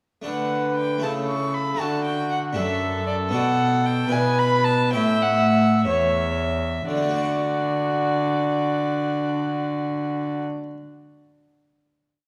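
An airy Flemish-style harpsichord with rolled chords opens this short, flowing, dance-like baroque-style sonata movement in D major and 6/8 at 56-79 BPM, joined at 0.3 s by a close, rich gut-string violin carrying the melody, a distant, nasal violin on counter-melody and sustained chords, and an up-front cello with light vibrato playing a walking bass, the music slowing from 2.6 s before a final D chord rings from 6.9 s in a wet recital hall.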